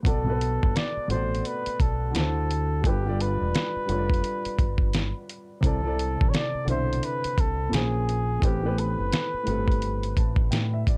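Lo-fi hip hop at 86 BPM with a swung sixteenth feel, this reflective, nostalgic excerpt from a longer piece drifts through jazzy chords from Bm7 through D7, G7 and C69 to Bbm7 and Am7. A breathy flugelhorn carries the solo melody in a jazz style, with scooped notes and light vibrato, its mellow tone softened by a low-pass filter, analog delay and plate reverb. Underneath, a dark upright piano accompanies with a woody, intimate character, its short sustain and audible action noise colored by cassette tape, filtering and plate reverb, before it closes with a fill from 9.8 seconds. A deep dub fingered electric bass supplies round, punchy low notes with a direct, amped sound. The sampler-style drum kit sits up front, compressed and muffled, with a thumpy kick, fat snare and hi-hat. The whole mix carries a light reverb and a cassette tape patina that adds to its vintage haze.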